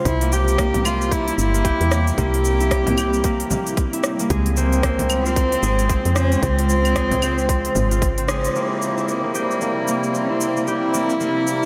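Organic downtempo at 113 BPM in C phrygian dominant, meditative and hypnotic, where fingerpicked concert harp arpeggios with a gritty 12-bit sampler edge and a distant, gut-string cello melody drift over an ethereal sidechain-pumped pad, a woody FM bass, a tight overdriven electronic kick, crisp hats with cabasa, claves and rim click, and a very quiet deep frame drum, until a band accent at 8.3 seconds ushers in a reedy, breathing hand-pumped harmonium while the pad sweeps through a filter, all soaked in a huge, dreamy reverb.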